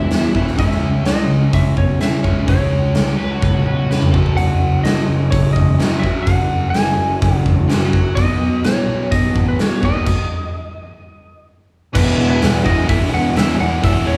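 Up front, a punchy, bright-roomed rock drum kit drives this confident classic rock excerpt: a biting overdriven guitar riff and a fuzzy bass in the background push through, a twangy, compressed lead guitar carries the melody, and an overdriven slide guitar adds a second line until 4.4 s; after a band stop at 10.1 s, the music lands on E at 11.9 s, where a very quiet steel-string acoustic, an overdriven electric guitar and a sludgy double-tracked distorted guitar join, all in a live room sound.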